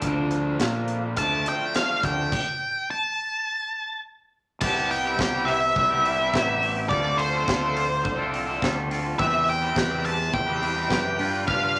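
A dark, fuzz-soaked lead guitar with an octave edge sits up front in this bittersweet, moody indie rock excerpt, entering at 1.2 s with a picked solo line. A stop lands at 2.3 s and holds until 4.6 s, where the music moves into its second section. Beneath the lead, a clean, twangy electric guitar and a bright, overdriven electric guitar each play picked riffs, while a punchy fingered bass, overdriven into fuzz, anchors the low end. A big acoustic rock kit with a boomy kick, a high-tuned snare, hi-hat and crash drives the straight groove. Very quietly in the background, a vintage string machine voiced as cellos holds mellow, warbling sustained chords with a soft attack and ensemble chorus, moving from D minor through Cmaj7, Dm7 and Cmaj7 over E to a closing G7, all in a large studio room with moderate reverb.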